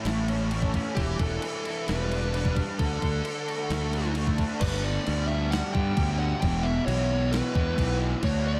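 An up-front, bright, double-tracked fuzz guitar riff opens this wistful, blissful shoegaze and dream pop excerpt at 132 BPM, carried by a dark, round, overdriven fingered bass and a crisp 8-bit drum machine with a thumpy kick, fat snare and crash cymbal. From 1.0 seconds a compressed fuzz lead guitar sings a melody through diffuse ambient delay, while the riff guitar shimmers with analog chorus. Chords move from A through Em7 and D before shifting to G5 at 4.6 seconds and E5 at 6.4 seconds, all in a dreamy mix soaked in wet church reverb.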